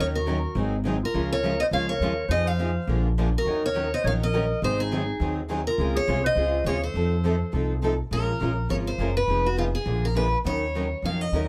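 Bittersweet and virtuosic, this short cut of acoustic string swing in jazz manouche style runs at 206 BPM in Bb minor, with a picked steel-string guitar carrying the melody up front over a woody, thumpy pizzicato upright bass on gut strings. A dark clarinet with vibrato, subtone and scooped notes weaves a distant, whispered second line until 7.8 s, while a boxy old ladder-braced guitar and a second steel-string guitar with fresh strings, set in the background, supply the accompaniment. Close, detailed microphones catch finger squeak on both steel-string guitars beneath light reverb, and the harmony turns to Bbm9 as a new section opens at 8.1 s.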